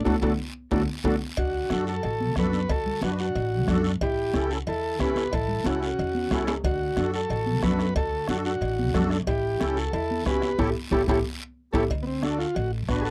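A straight 4/4 cumbia groove at 183 BPM in D major drives this joyful, danceable latin excerpt, built on a soft-beater bombo, soft-handed congas in the background, a raspy guiro and ringing timbales and cowbell beneath a thumpy, woody pizzicato upright bass, while a vintage, overdriven combo organ with light vibrato leads up front over a shimmering musette accordion and a dark, clean, fingered electric guitar that stops at 11.9 s, when the organ takes a brief solo, all in a dry, close 1970s-style studio sound with light reverb.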